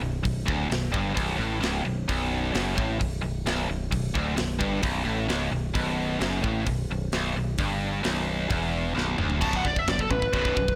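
Heavy metal with an aggressive, heavy mood, this short cut from a longer piece opens on a tight, double-tracked distorted guitar riff, picked low and placed up front. A growling electric bass sits beneath it, its warm tone pushed by overdrive and tube saturation. At 0.3 seconds a polished acoustic metal kit joins, with an airy big-room sound, a medium-tuned snare, toms, hi-hat, crash and china cymbals, and a tight kick given soft clipping. A drum fill at 9.0 seconds leads into a new section at 9.4 seconds, where a high-gain lead guitar breaks into a bright, picked solo. The whole mix carries light reverb and a blown-out, overdriven character.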